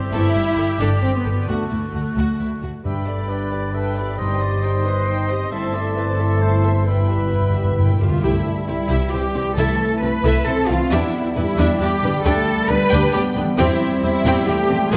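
Moving in a straight triple metre, this cinematic orchestral passage feels triumphant and adventurous, and it is cut from a longer piece. The violins carry the melody with expressive vibrato and portamento, set close and lush, while a second violin line with a soft attack sits in the background above focused, smooth-topped violas. A woody double bass section anchors the bass alongside dark, distant cellos, as mellow French horns and very quiet, vintage-tinged trombones hold sustained chords and a ringing concert harp plays very quiet fingerpicked arpeggios throughout. A distant, roomy oboe adds a second line from the start, and at 2.8 seconds a pure silver flute and a very quiet, clear clarinet join it with smooth-topped trumpet stabs, while round, soft-mallet timpani enter in the background at 2.9 seconds. The timpani play a fill from 6.9 seconds, and the harmony moves to a new key centre at 8.2 seconds as the strings, brass and harp carry on. 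A generous scoring-stage reverb and a dark, rounded production give the whole passage a lush, enveloping glow.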